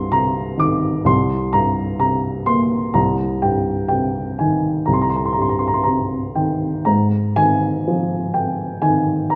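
Classical solo piano in a lyrical, wistful vein, this short excerpt moves at a slow, rubato pace, its dark mood carried by a single upright piano heard up front, reaching from low bass notes into the upper register. The instrument's woody, boxy tone and short sustain give each chord a mellow, intimate quality, set against the lingering reverb of a church or concert hall. Around 6.9 seconds the harmony shifts to a new section that carries the excerpt to its end at 9.4 seconds.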